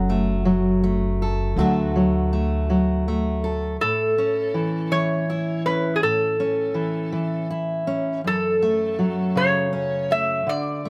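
Close, detailed microphones and light reverb give this short cut from a longer acoustic folk piece an intimate, pastoral feel, moving gently in 6/8 at 54 BPM in A major. A fingerpicked steel-string guitar sits up front with audible finger squeak, carrying the accompaniment throughout and opening over F#m and D, joined by a woody, dark pizzicato upright bass until 3.8 s. From there a metallic, nasal resonator slide guitar, played with fingerpicks and a steel bar, takes the solo over A and F#m until the end at 10.9 s.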